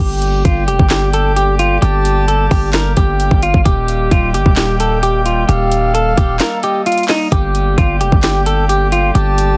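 A dense, heavily limited modern master with a bed of vinyl crackle and little reverb frames this short, dark trap excerpt in G minor, moving at 131 BPM in a half-time 4/4 feel. Up front, an electronic trap kit hits with a hard-clipped kick, a sharp snare, metallic hi-hats and handclaps, while a punchy, heavy 808-style bass with a sine body, a noise layer and a fast, decaying attack anchors the low end. A clean, picked electric guitar carries the compressed melody in the middle register, and a distant, roomy woodwind section sustains classical-style chords beneath it. Tucked in the background, a breathy, flute-like synth lead with vibrato, chorus and delay sings a soft second line higher up. The harmony moves from G minor to E-flat and back to G minor, and the kick drops out briefly from 6.4 to 7.3 seconds before the hard-hitting groove returns.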